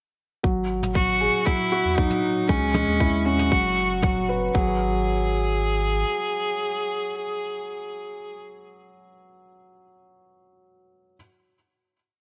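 A four-on-the-floor kick with crisp, overdriven open hats and very quiet brushed low toms drives this melancholic, intimate piano and strings electronica piece at 117 BPM, where a felt-muted upright piano plays a dark, mellow 12-step arpeggiated loop with audible action noise that drifts against the bar through digital delay, a round sine sub bass holds long gliding notes with sidechain pumping until 6.0 s, and a clear, earthy bowed cello with light vibrato carries motif-based phrases through a build to a final chord at 4.5 s, set in a lush hall reverb with small room ambience.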